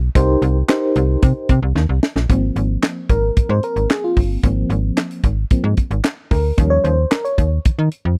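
A snappy, slap-like FM bass opens this feel-good early-eighties boogie funk excerpt, its metallic, fast-attack notes ranging from G1 up to Eb3 at a danceable 112 BPM in straight 4/4 and Ab major. At 0.2 seconds a tight funk drum kit joins with kick, snare, hi-hat and handclaps, its high-tuned snare and natural, acoustic character sitting up front in a small room. An FM electric piano enters alongside it, warbling with tremolo and a phaser over a noise layer, its mellow, vintage tone spanning F3 to Db5. A drum fill at 1.8 seconds leads into the next section, where the electric piano takes a solo from 2.3 seconds as the harmony moves from Eb6 to Ab69 and later Eb7. The sound is dry and close, in the manner of a 1970s studio, with the piano stopping at 7.5 seconds and the drums at 8.0 before the bass closes out this fragment of a longer piece.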